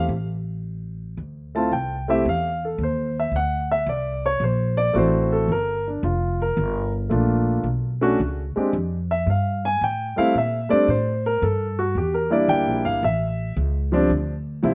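Sophisticated and playful, this jazz piano trio fragment swings at 111 BPM in 4/4 in D minor, with a concert grand piano carrying the melody in a warm, deep-voiced tone touched by slapback echo, and a woody, thumpy pizzicato upright bass holding down the low end throughout. After a brief opening, the piano takes a solo from 1.2 s over changes moving from Dm9 through Gm7, Am7 and Em7b5 before landing on D7. Both instruments sit up front in a dry sound captured outdoors.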